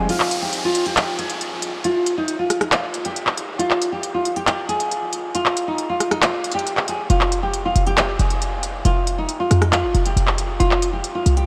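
A fingerpicked nylon-string guitar opens this brooding, melancholic trap excerpt in F minor, its full-bodied classical tone softened by lush chorus, a low-pass filter and delay as it carries the melody between Eb4 and Ab4, joined by a brief punchy 808 hit. From 0.1 s a crisp, up-front trap kit of handclaps, hi-hat and rim click settles into a half-time feel at 137 BPM, roughened by vintage 12-bit sampler grit, while an electronic downlifter falls away by 3.6 s. At 7.1 s the kick enters and the tight, sine-based 808 returns on an Fsus2 before an F5 at 10.6 s, all set in a dreamy mix soaked in a huge ambient reverb and tuned to A4 = 445 Hz.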